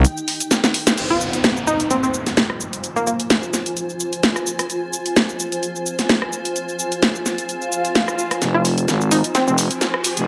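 A growling, thick FM bass sits up front in this bouncy, swaggering bass house excerpt at 129 BPM in F minor, hitting at the very start and returning for the build-up from 8.4 seconds. A layered electronic house kit with a cracking snare, hi-hat, shaker, rim click and crash carries a lightly swung 4/4 groove throughout, beneath a blurred, evolving granular cloud pad bathed in its own reverb, while a crystalline, detuned wavetable pluck with chorus and tape echo adds brief melodic phrases. Electronic downlifters, swells and risers mark the transitions, and a moderate plate reverb adds space. An opening break and drum fill move from a rootless C minor chord into F minor.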